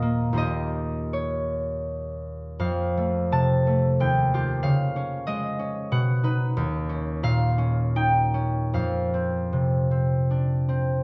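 Dreamy and peaceful, this brief classical passage for solo concert harp is cut from a longer piece and drifts in 3/4 with a rubato feel, its pulse moving loosely between 75 and 96 BPM. The harp carries everything from 0.0 to 11.0 seconds, sitting up front with a fingerpicked, ringing tone that spans from Eb2 up to A5. Lush extended harmonies pass by, opening on Eb9 at 0.4 seconds and sliding through Fadd9, Ebadd9, Dbadd9 and Badd9 before returning to Eb9 and settling on Fsus2 at 8.7 seconds. A moderate recital hall reverb gives the strings a soft halo, while the top end is gently rounded off, lending the sound a mellow, intimate glow. The instrument is tuned slightly high, to A4 = 441 Hz.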